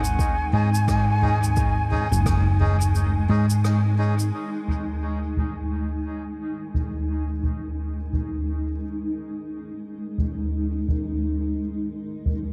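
Ambient dub at 87 BPM in Ab mixolydian, spacious and peaceful, this swung fragment opens on an Absus4 chord with an airy, distant concert flute melody carried on dub echo, a blurred, detuned granular cloud pad that holds sustained chords to 12.5 seconds and takes a filter sweep from 4.3 seconds, a round, dark hollow-body electric bass up front, a soft-mallet kit of cabasa, rim click and toms, an overdriven electronic kick that drops out at 2.9 seconds, and reedy, nasal melodica stabs echoing in a boxy small room.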